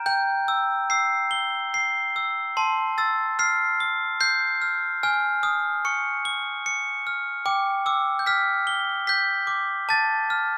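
Swaying in a rubato 3/4 at 73 BPM, this sleepy, gentle children's lullaby in F major, cut from a longer piece, features a solo glockenspiel struck with hard plastic mallets, its bright, bell-like tones sitting up front between G5 and A7 and ringing into a moderate recital-hall reverb as the harmony moves from C to F at 2.6 seconds, then through Db and G before settling back on F at 9.9 seconds.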